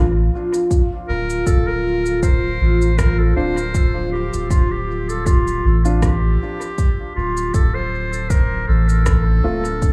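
Ambient dub excerpt with a spacious, moody feel, where a dark, detuned sawtooth pad with chorus holds slow-attack chords over a round, soft sub bass placed up front. Echoed electronic cabasa and rim click enter at 0.5 s, joined by an electronic kick at 0.7 s. A clear classical-style solo clarinet carries the melody through dub echo from 1.1 s, and woody upright piano stabs arrive at 3.4 s under a filter sweep and dub echo, the whole set in a light small-room digital ambience.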